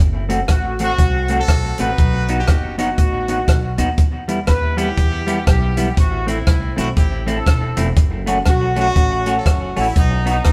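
A woody, thumpy pizzicato upright bass opens this energetic, swung ska excerpt and is quickly joined by a punchy, up-front compact cocktail drum kit of hi-hat, kick and rim click that drives the groove, a clean hollow-body electric guitar with tape echo, and a smooth-topped horn section carrying the melody with light vibrato, the band playing live in a stone room over chords moving from F#dim through B, Em, Am and F#m.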